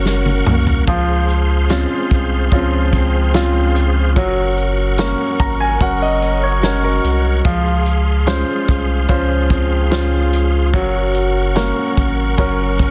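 A tender, emotional pop ballad at 73 BPM in Db major, this excerpt from a longer piece drifts between Gb and Dbmaj7 as a clear, polished concert grand piano carries the accompaniment and adds a fill from 5.0 to 7.5 seconds. A reedy tonewheel organ holds sustained chords with chorus vibrato, key click and a fast rotary speaker, while a fingerpicked nylon-string guitar plays arpeggios through a delay over a round, deep sine sub bass sitting up front. A natural country drum kit with a punchy, softly clipped kick opens with a fill from 0.1 to 0.9 seconds alongside a grainy, vintage tube shaker in the background, all set in light reverb and small room ambience within a dense, heavily limited modern master.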